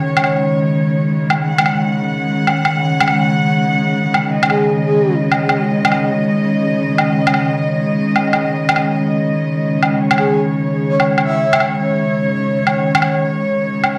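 A warm studio cello section opens this dark, heavy half-time drum and bass excerpt, bowing sustained chords sul tasto with a soft attack, light vibrato and a smooth top that sits close and intimate. A sampler-style woodblock carries the drum part almost at once, pitched down, compressed and gritty, re-recorded in a large room yet placed up front with a swung, half-time 4/4 feel. A breathy, flute-like synth lead, built from triangle and sine tones with a noise layer, square wave and sub octave, slips in briefly at 4.5 seconds and returns at 10.2 seconds. That lead is soft and sustained, with its own vibrato, subtle chorus and digital delay. A moderate echo chamber reverb with digital ambience surrounds the piece, and the slightly low tuning of A4 = 437 Hz adds to its shadowy weight.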